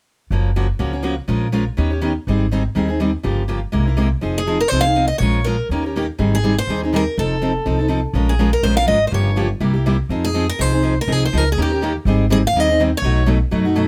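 Fiery and swinging, this excerpt of acoustic string swing in the jazz manouche style races along at 245 BPM in 4/4, with a 55% swing on the eighth notes and a home key of F minor, tuned to A4 = 443 Hz. A picked steel-string acoustic guitar carries the accompaniment from 0.3 seconds, sitting up front alongside a pizzicato upright bass whose woody, warm tone anchors the low end. At 4.4 seconds a second picked steel-string acoustic guitar enters with the melody, its bright, concert-style sound showing finger squeak on the strings, and it plays until shortly before the close at 13.9 seconds. The accompanying guitar has a crisp edge from fresh strings and also catches audible finger squeak. The harmony moves quickly through jazz colours such as Gbmaj7, Ebaug7, Gm7b5 and Fm7 before landing on a B9, and light reverb gives the trio a sense of space.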